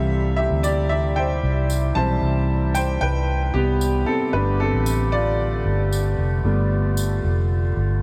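A dreamy mix soaked in a huge ambient reverb gives this short cut from a longer piece a spacious, enveloping sound. It is piano-driven pop with a warm, anthemic mood and a straight feel in four, moving from C to Gadd9 at 4.3 seconds. An open, up-front baby grand piano takes the spotlight throughout, while a distant, roomy woodwind section holds sustained chords in a classical style. Beneath them, a vintage fingered electric bass sounds dark, round, amped and foam-muted, and sits up front. A jingly, close and dry acoustic tambourine enters at 0.6 seconds and drops out at 7.1 seconds.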